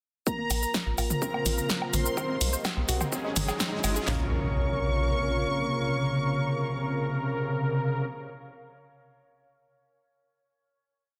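Driving and melancholic, this short melodic techno piece in Bb minor runs at 126 BPM in a straight 4/4, building for about four seconds before settling onto a final held chord at 4.1 seconds. A techno drum kit lays down a heavy four-on-the-floor kick with cracking snare and handclaps, while a punchy, tape-warm analog drum machine sits up front with programmed hats and backbeat, adding shaker, mid tom and a low woodblock. A tight sequencer bass drives off-beat notes with a detuned, filter-plucked bite, and a round analog pluck repeats a 16-step arpeggio in the background as a filter sweep opens on it through the build. The soft octave-layered synth lead carries a dark, repeating riff with vibrato and dub echo, also under a sweeping filter, doubled an octave higher by a smooth, evolving supersaw, while bold, fat analog synth brass fires sparse echoing chord stabs in an open voicing. A deep, moody analog pad sustains chords beneath a warbly, nostalgic lo-fi tape-like pad whose chords slowly shift through Bbmadd9, Cm7 and Ab7sus4. 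A riser and impact mark the transition from 2.2 seconds, and sidechain pumping, a lush hall reverb and a dense, heavily limited master give the whole piece its breathing, polished weight.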